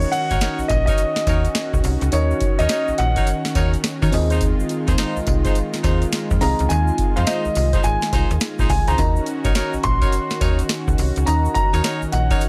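A punchy, confident new jack swing excerpt bathed in digital ambience, moving at 105 BPM with a 16th-note swing in Eb dorian over Ebm7, Fm7 and Ebm7, where an intimate concert grand piano with audible action noise carries the melody above a lush, dreamy FM electric piano with a soft pad layer and a bold, brassy analog pad, both chorused, while a snappy slap-like FM bass and a booming, dry analog drum machine with deep kick, crisp snare, metallic hats and tambourine sit up front, a grainy egg shaker ticks in the background, and a jazz-style horn section punctuates with stabs through digital delay from 0.3 seconds.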